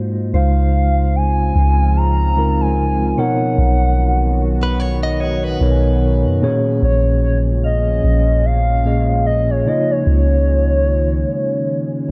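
A dark, softly ambient mix with light digital reverb frames this tender, dreamy slice of contemporary R&B, its sixteenth notes carrying a lazy swing. A mellow tine electric piano sits up front from the start, joined at 0.3 seconds by a round, sine-toned 808-style bass and a hollow, woody synth lead that carries the melody high, with vibrato, chorus and tape echo. Behind them a faint, pure FM bell adds warbling vintage sparkle through its own chorus and echo. A moody, full-bodied pad of detuned sawtooth with a sub octave enters at 1.2 seconds with a slow attack, bathed in chorus and built-in reverb. Briefly from 4.6 seconds, a clean, direct-recorded electric guitar picks compressed arpeggios colored by phaser and tape echo, while the harmony moves from Dbmaj7 through Cbmaj7 and Bbm7 to settle on Db69 in this section cut from a longer piece.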